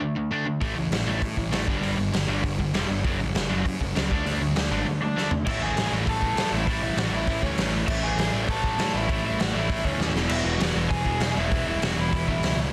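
Energetic and rowdy, this punk rock excerpt charges ahead at 198 BPM in a straight 4/4, settling into A major from 5.5 seconds. Two overdriven rhythm guitars open the riff at once and sit in the background, one a bright cranked stack and the other a hollow-bodied semi-hollow. At 0.6 seconds a fuzzed, picked electric bass and a raw garage drum kit join, the kit up front with a punchy kick, a medium-tuned snare, crashes, splashes, hi-hat and toms, its gritty, saturated sound captured in a stone room with a rolled-off top. At 5.0 seconds a lo-fi lead guitar through a small cranked amp adds an overdriven melody with delay, just before a short drum fill leads into the second section, and another fill near 10.0 seconds tips the chords toward E. Light reverb and a dense, heavily limited modern master keep the whole thing loud and tightly packed.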